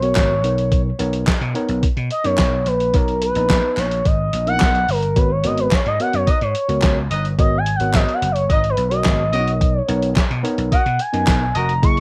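Early-eighties boogie funk with a slick, late-night mood, this excerpt is built around an analog synth lead solo: a smooth sawtooth line with portamento, vibrato, chorus and a cassette-tape tint sits up front over a worn, slightly out-of-tune tine electric piano with light overdrive, a bright, growly slap bass and a muffled, pitched-down sampler-style drum kit with a thumpy kick. Hollow group handclaps ring from a large room throughout, and a loose, distant horn section enters as a second line at 6.3 seconds while the harmony moves between Bmaj9 and G#m11. Light reverb and the home cassette recording lend the whole a lo-fi haze.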